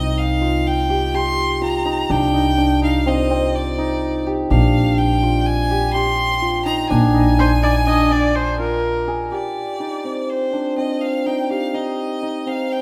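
A moderate scoring-stage reverb surrounds this restless, pensive piece of contemporary chamber music in C minor, cut from a longer work and moving at 125 BPM in a straight 5/4, where a shimmering, ringing hammered dulcimer sits up front with arpeggios over a woody, thumpy pizzicato upright bass that stops at 9.3 seconds, while a distant, intense bright violin carries the bowed melody with vibrato, a nasal, boxy clear viola adds a smooth second line from 7.4 to 9.3 seconds, and the harmony moves from Cm9 through Bb7 to Cm.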